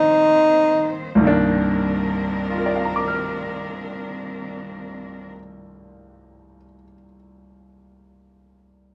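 An intimate, wistful jazz ballad fragment in a slow swing opens on a Cm9 as a dark, breathy tenor saxophone solo, with subtone, vibrato and scooped notes, sits up front for its first second while the music slows, over a clear, vintage-toned grand piano accompaniment that carries on to 8.9 seconds and lush bowed cello-section chords that sustain until 5.3 seconds, captured through close, detailed microphones with light reverb.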